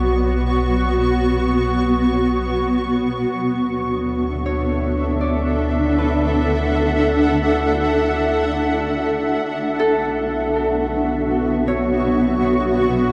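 Serene ambient music in D major at 79 BPM, cut from a longer piece, where a cloudy, evolving granular pad sits up front with its own reverb on sustained chords moving from Bmadd9 to D at 3.3 seconds and back at 9.4 seconds, while a bright, ringing Celtic harp fades in with delayed arpeggios in the background and a round, deep sub bass fades out beneath, all bathed in a huge, wet reverb with a 7.3-second tail within a dark, warm production.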